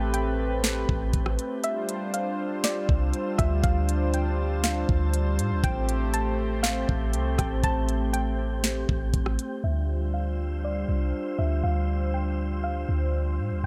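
Ethereal and spacious, this atmospheric cloud-rap excerpt moves at 120 BPM in 4/4 with a half-time feel, set in D minor and cycling through Am7 and Dm11 chords. A clean, deep 808-style bass with a fast attack and dark decay sits up front alongside a smooth analog pad, which holds sustained chords with a soft attack and long release, treated with chorus, low-pass filtering and sidechain pumping. A soft, round pluck carries the melody high above, darkened by a low-pass filter and spread with chorus and digital delay, while a faint, breathy wind-like noise texture drifts in the background through its own built-in reverb. A trap drum kit with a knocking kick, sharp snare, crisp hats and rim clicks drives the track until 9.5 seconds, with a brief break between 1.6 and 2.6 seconds. From 9.6 seconds a filter sweep carries the closing passage over the remaining pad, bass, pluck and texture, and the overall sound stays dry and close.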